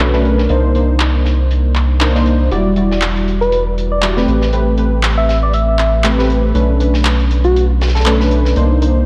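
A dark, softly reverberant small-room mix frames this hypnotic, deep house excerpt at 119 BPM with a gentle 16th-note swing, where detuned sawtooth analog keys play chorused, delayed stabs up front through Cm9, Em9, Am9 and Bm9 over a round, sine-like analog bass, while a mellow tine electric piano with phaser and dub echo sounds in the background only until 1.7 seconds, overdriven electronic handclaps enter at 1.0 seconds, a crisp, filtered fusion kit of airy hi-hat and high-tuned snare sits quietly beneath, and from 3.4 seconds a gentle FM synth lead with chorus, phaser, digital delay and vibrato carries the melody.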